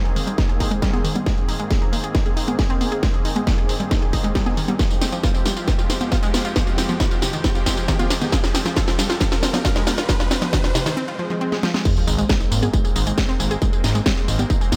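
Soaring and euphoric, this uplifting trance excerpt at 136 BPM builds over a filtered supersaw swell of slow-attack, detuned unison chords that pump with the sidechain, while a round, bright analog pluck spins arpeggios through chorus and digital delay, moving from Abadd9 to Fmadd9 at 4.8 seconds. A layered techno kit with cracking snare, hi-hat, congas, tambourine and crash sits up front beside a distorted electronic kick, rolling through drum fills and a brief break as a very quiet riser and sub drop rise beneath. At 11.9 seconds the drop lands back on Abadd9 with an impact, and from 12.1 seconds a fat, detuned sawtooth bass with a filter sweep holds a pumping Ab1, all in a light reverb.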